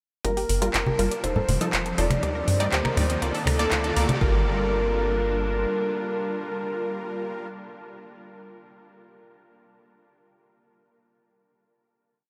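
Progressive house in G minor at 121 BPM, emotional and driving, this short piece builds from 0.2 to 4.2 seconds over a four-on-the-floor electronic kick, a pop kit of metallic hats, snaps and claps, bright close congas, a tight, saturated sequencer bass driving in eighth notes, a detuned analog pluck arpeggio and dotted-rhythm supersaw stabs, the pluck and stabs both under filter sweeps, while a very quiet riser marks the transition. Above them a full, round octave-layered synth lead with chorus, vibrato and tape echo repeats its riff, doubled in unison by a pure, warbling FM bell, as an evolving, morphing wavetable pad holds sustained chords through Gm7, F7, Ebmaj7 and Bbmaj7/D. At 4.2 seconds the percussion drops away and the music settles on a final Gm7, with the bass stopping at 5.7 seconds, all in a dreamy mix soaked in huge ambient reverb.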